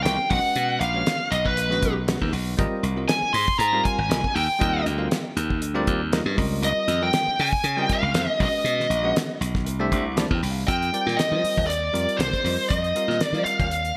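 Bright 1980s-style digital production with a lush hall sheen frames this funky electric jazz fusion excerpt at 119 BPM in 4/4 with a light sixteenth-note swing, where a bluesy, distorted lead guitar carries the melody with delay up front, a punchy slap bass and a damped 70s kit with a fat snare, tight kick, hi-hat and gated reverb drive the groove, and a bell-like, clean tine electric piano comps through lush major-ninth chords before a short fill at 9.9 s leads into a suspended section at 10.7 s.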